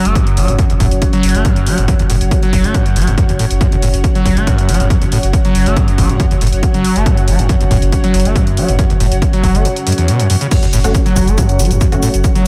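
A driving, straight 4/4 pulse at 139 BPM anchors this dark, industrial stretch of peak-time techno in F# minor, cut from a longer piece and resting on a single F#m chord throughout. An overdriven electronic kick sits heavy and up front, joined by a layered techno kit of crash cymbal, hi-hat and shaker, with overdrive, studio reverb and sidechain pumping on its hats and cymbals. A saturated sub bass holds a thick, deep F#1 with a fast attack and low-pass filtering, pumping under the kick. Riding over it, a screaming acid line in sawtooth squelches and snarls through a resonant filter sweep, distorted and up front with analog delay and a touch of chorus. Behind it, a moody sawtooth-and-sine drone pad with a moving notch sits in the background while a breathy, warbling vintage pad drifts higher, both pumping with the sidechain, before a bright, detuned rave stab with delay and reverb cuts in at 10.8 s, all inside an echo-heavy digital ambience.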